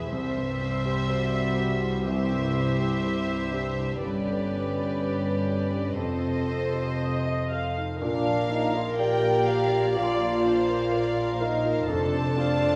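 A solo French horn with a dark, smooth tone opens this cinematic, emotional film score excerpt, singing a classical-style melody over bowed strings and a grand piano set in the background. Two violin sections carry a melody and a second line with light vibrato and soft, sul tasto bowing, while the floating, distant violas, the pure cellos and the intimate double basses fill out the accompaniment and bass. At 62 BPM in 4/4, the rubato pacing gives the music a moving, uplifting sweep, and the harmony settles into Bb major from 8.0 s. At that point the solo horn has given way to a clear, punchy French horn section that stands up front with sustained chords. A wet recital hall reverb lends the whole ensemble the air of a church or concert hall.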